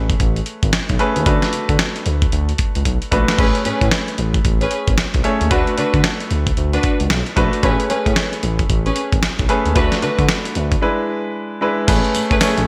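A swung sixteenth-note groove at 113 BPM drives this flirty, upbeat new jack swing excerpt in A major, built on a gritty, compressed sampler-style drum kit treated with gated reverb, featuring a thumpy kick, snare, hi-hat, tambourine and crash, plus a fill at 2.9 s and a break at 10.8 s. A clear, polished baby grand piano and a smooth, gliding sawtooth synth bass with portamento carry the Amaj9 and D6 changes, moving to E7 before returning home, while veiled, con sordino strings with vibrato and delay add lush stabs from 3.4 s. A very quiet, crisp group handclap lands at the very end, all within bright 1980s-style digital production and light reverb.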